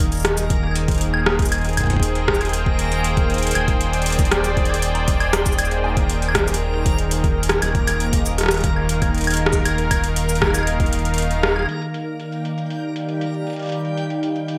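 An up-front, detuned analog pad warbles through smooth vintage chords in this playful, glitchy IDM excerpt, supported by a round, dark analog bass and a reversed, granular texture that swells dreamily behind them with lush chorus and its own reverb. An overdriven electro drum machine with metallic hats, rim click, shaker and woodblock sits forward in a big gated room, while a deep electronic kick anchors the groove until it drops out at 11.2 seconds. At 11.7 seconds the bass stops and a filter sweep moves across the pad as it shifts to a new chord, all within a bright 1980s-style digital sheen.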